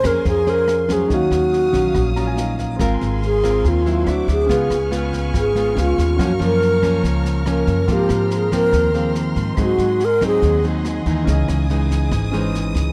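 Sunny and romantic, this bossa nova excerpt at 142 BPM in Ab major puts an airy, slightly unsteady wooden-headed alto flute with vibrato and a soft attack up front on the melody, moving into a solo at 2.8 seconds and playing until 10.6 seconds, over fingerpicked classical nylon-string guitar with audible finger squeak, a woody, thumpy pizzicato upright bass, a brushed jazz kit with rim clicks and a boomy kick, an expressive bowed chamber string section holding sustained chords, and a clear grand piano in the background that adds a short fill at 2.0 seconds, set in a dry, close 1970s-style studio sound.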